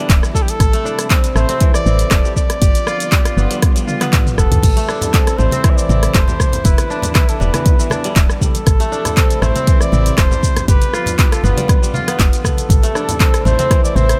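Afro house in A minor at 119 BPM with a gently swung 16th feel, this driving cut from a longer piece rides a deep, up-front electronic kick and a layered deep house kit of handclaps, hi-hat, rim click, shaker, toms and crash, with a drum fill at 3.9 seconds bringing in compressed, low-tuned congas in the background at 4.6 seconds. A woody, round FM bass, fingerpicked kora arpeggios ringing through tape echo, and veiled, con sordino strings holding sustained chords all pump against the kick, cycling through Em7, Am7 and G7. Over the top, a breathy, intimate trumpet with a bucket mute sings a mellow vibrato melody through tape echo, the whole mix set in a studio reverb.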